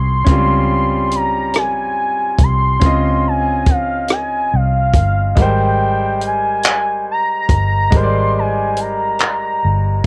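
This slow R&B excerpt in 6/8 moves at 47 BPM counted in dotted quarters, with an intimate, sensual mood in Db lydian. A gliding portamento lead carries the melody between F5 and C6, blending sawtooth and sine tones that are detuned and soft in attack, sustained with vibrato and chorus, and sitting up front. Beneath it, a clear baby grand piano accompanies from G3 to Eb5 with long sustain and audible action noise, while a dark, round, foam-muted electric bass holds the low end between G1 and Db2. A compact cocktail drum kit enters at 0.3 seconds with handclaps, hi-hat, rim click and a tight kick, sounding dry and close. The harmony rests on Dbmaj9 before shifting to Abmaj9 at 5.4 seconds. Captured as a home recording on cassette with very little reverb, the piece has a lo-fi tape character on the lead, piano and drums.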